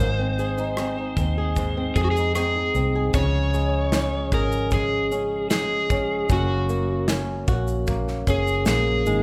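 Easy-going and heartfelt, this short excerpt of acoustic pop in Db major moves at 76 BPM, with an up-front overdriven slide guitar singing the melody over fingerpicked flamenco guitar with fresh strings, a dark, round, foam-muted vintage electric bass, and a modern studio drum kit with tight kick, rim click, shaker and snare entering at 0.4 seconds, while a clean tonewheel organ with slow rotary speaker joins in the background at 3.1 seconds, all set in the moderate reverb of a recital hall as the chords pass from Ab to Db to Gb.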